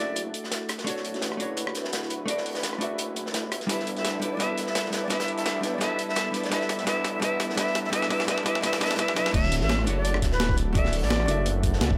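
A breathy, bright concert flute with tape echo carries a dreamy melody over an up-front, clean hollow-body jazz guitar in this lush liquid drum and bass excerpt, where a chorused, warbling unison pad pumps beneath, a menacing detuned saw bass evolves in the background, and two gritty breakbeat kits, one sampler-style and one crunchy, saturated and dark, build through a drum fill from 3.7 seconds until a thumpy, compressed electronic kick drops in at 9.3 seconds.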